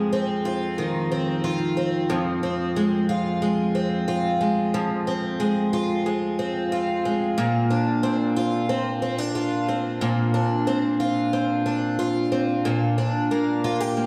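A dark, warm production places a lone picked twelve-string acoustic guitar up front in a wet recital hall reverb, its octave-doubled strings sounding bright and shimmering through lush chorus and delay. This brief dream pop excerpt, cut from a longer piece, carries a melancholic, haunting mood over a straight 4/4 feel. The guitar plays solo throughout, ranging from F2 to G4. An opening Fm7 gives way at 2.1 seconds to a longer passage moving through Fm and Bbadd9 before settling on Gm7/Bb at 12.7 seconds. The hall's lingering tail and the chorus-laden shimmer of the strings lend the short passage a suspended, glassy quality.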